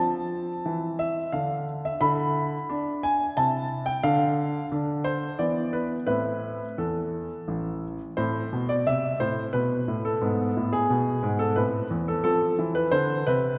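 In a straight 3/4 at 88 BPM, this playful, elegant classical-period piano sonatina in A minor, cut from a longer piece, features a clear, intimate grand piano placed up front with audible action noise and a natural tone, spanning A1 to B5 within a wet concert hall reverb and a dark, warm production, moving into a new section at 8.2 seconds.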